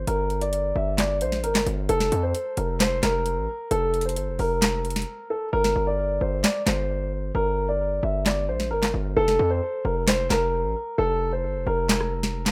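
Menacing and brooding, this short trap fragment from a longer hip hop piece moves with a half-time feel. A dark baby grand piano carries the melody in a mellow, long-sustaining voice, softened by a low-pass filter and trailed by delay. Beneath it, a distorted 808-style bass growls with a saturated, noisy edge, its fast attack decaying into a heavy low end. A booming analog drum machine supplies handclaps, rim clicks, a crisp snare and metallic hi-hats, with a short room around the snare, claps and hats and a tape-warm character. After a brief break from 5.1 to 5.5 seconds, the hi-hats drop out for the rest of the passage as the harmony cycles between G minor and F. The piano, bass and drums all sit up front in a rough home demo mix with light reverb.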